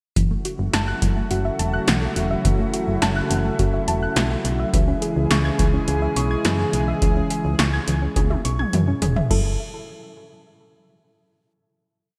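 Synth-pop in F# minor at 105 BPM, this short, complete piece carries a melancholic, cool mood over a straight 4/4 pulse, moving from F#m7 to C#m and back to F#m7 for a final chord that rings from 9.3 seconds. An up-front electro analog drum machine drives a straight beat with a deep kick, punchy snare, metallic hats, toms and crash, all treated with gated reverb, and a drum fill arrives at 8.2 seconds. Beneath it, a solid FM bass pulses in eighth notes, punchy and dark with a fast attack and decaying tail. A lush unison pad of detuned sawtooth and square waves holds thick, warbling, vintage chords with chorus, while a soft round pluck traces rising sixteenth-note arpeggios through chorus and delay. The bright 1980s-style digital production sits in a moderate hall reverb.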